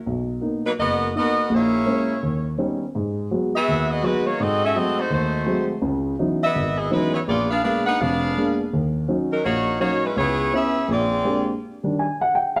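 Energetic, brassy swing jazz at 166 BPM in 4/4, tuned to A4 = 435 Hz and cut from a longer piece, where a dark, mellow grand piano sits up front accompanying from 0.1 s, and a clear saxophone section with light vibrato and a smooth top carries the ensemble melody from 0.7 s through a chord progression opening on Bmaj7 and arriving on Ebmaj7, all set in a moderate large-studio reverb before the piano ends at 12.6 s.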